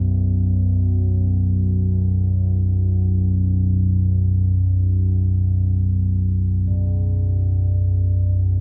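Dark ambient drone in free time, this dark, desolate excerpt from a longer piece rests on a deep, ominous rumbling drone that sits up front from the start, its sawtooth edge softened by a slow attack, sustained tone, long release, lush chorus and built-in reverb. At 6.7 seconds a quartz singing bowl joins with ringing, meditative arpeggios struck with a wooden striker, its pure tone showing slow beating and trailing tape echo. The small room ambience and light reverb frame both parts through to the close at 8.6 seconds.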